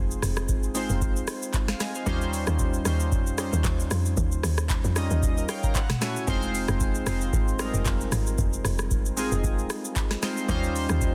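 Soulful and deep, this amapiano excerpt at 114 BPM in F minor pairs chorused, detuned analog keys, round and up front with a filter sweep and a brief fill at 5.2 s, with a woody, punchy FM log drum bass and a booming, tape-warm analog drum machine whose deep kick, soft-clipped crisp snare, metallic hats, claps, rim clicks, shaker and toms sit in a dense, dry, heavily limited mix over Fm7, Eb13 and Gbm7 chords.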